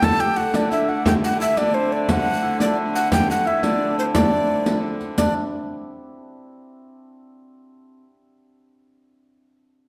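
Set in 6/8 with a straight feel, this festive, ancient-sounding medieval dance is cut from a longer piece. A breathy, mellow tenor recorder carries the melody up front, its wooden tone marked by a crisp chiff, vibrato and an unsteady quality. Beneath it, a bright hammered dulcimer plays a shimmering, ringing second line. A clear hurdy-gurdy holds an earthy drone with an airy bow, while the percussion pairs a deep, distant frame drum struck with hard hands against the bright jingles of a riq played with soft hands, all set in a wet recital hall reverb. Around 5.3 s the recorder, drone and drums drop away, leaving the dulcimer sounding alone until 8.0 s.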